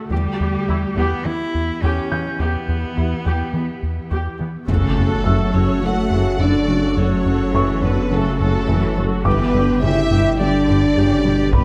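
A straight 4/4 pulse drives this brooding, vast stretch of hybrid orchestral and electronic film score, cut from a longer piece. At the start, a single bowed cello carries the melody with smooth vibrato and a tape echo. Beneath it sit a lush viola section sliding with portamento, a soft-edged cello section in the background, an ethereal, detuned pad and a felt-muted upright piano whose boxy, intimate tone and audible action noise also trail through tape echo. A rubbery, hollow square bass riff bounces underneath throughout. At 4.7 s the solo cello has given way and the texture opens: a focused violin section takes a second line, a dark French horn section and a very quiet trombone section hold sustained chords, and a clear double bass section, a punchy tuba and a deep, clean sine sub bass anchor the low end as a very quiet electronic impact hits. A close, dry taiko ensemble with hard sticks strikes there and returns at 9.2 s, while the harmony moves from Em to F#m and then G within a light reverb.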